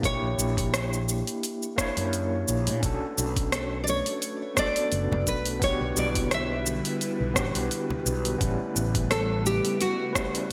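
A wistful, relaxed sunset chillout excerpt in B minor at 86 BPM, with a gentle swing on the 16ths, opens on a barky, overdriven tine electric piano with medium tremolo and delay, a growly fretless electric bass, an up-front deep house drum kit of hi-hat, rim click and shaker with gated reverb, and a thumpy, gritty electronic kick, as a fingerpicked nylon-string guitar soon carries the melody through analog chorus and delay; an airy, breathy pad enters at 2.8 s, low-tuned congas sit in the background from 5.1 to 8.0 s, and the bass drops out at 9.6 s, all set in a lush hall reverb with bright 1980s-style digital production.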